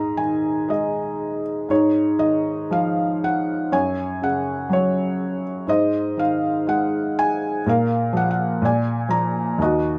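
A slow, rubato pulse at 60 BPM in 4/4 carries this short cut from a longer piece of lyrical classical solo piano, wistful and dark in mood. A felt-muted upright piano plays alone for the full ten seconds, its tone soft, mellow and intimate, with the thin felt lending a muted, hushed quality. Its range spans Eb2 to Bb5, and the harmony moves from Ab5 through Ebm11/Ab, Gb5 and Ab before reaching Bb5 at 7.7 seconds and settling on Bb at 8.6 seconds. Close, detailed microphones place the instrument up front, so each note feels near at hand. A light reverb gives the sound a faint sense of space around it.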